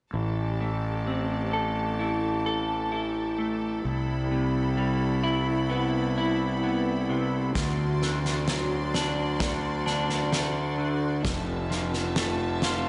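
Heard in a small room with light reverb, this euphoric, hopeful post-rock excerpt pairs picked, clean electric guitar arpeggios colored by analog chorus and tape echo with sustained chords from a clear, bowed string section of biting intensity and light vibrato, all over an up-front fuzz-overdriven fingered bass, and a loose indie drum kit with a punchy kick and fat snare joins at 7.6 seconds.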